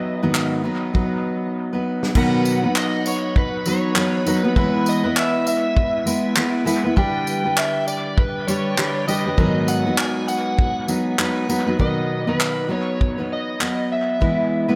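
A loose, swung sixteenth-note groove in four drives this heartfelt, carefree acoustic pop excerpt, with a punchy, up-front small-room country kit of kick, snare, handclaps, tambourine and crash cymbal coming in at 0.3 seconds and rolling through a fill before the organ arrives. A full-bodied, fingerpicked jumbo steel-string guitar with fresh strings carries the accompaniment, while a dark, overdriven electric slide guitar played with fingerpicks sings the melody, and both guitars and the drums are soaked in dub echo. From 2.2 to 11.8 seconds a piping, scooped tonewheel organ with key click holds sustained chords in the background, colored by chorus vibrato and a slow rotary speaker, all within a light reverb.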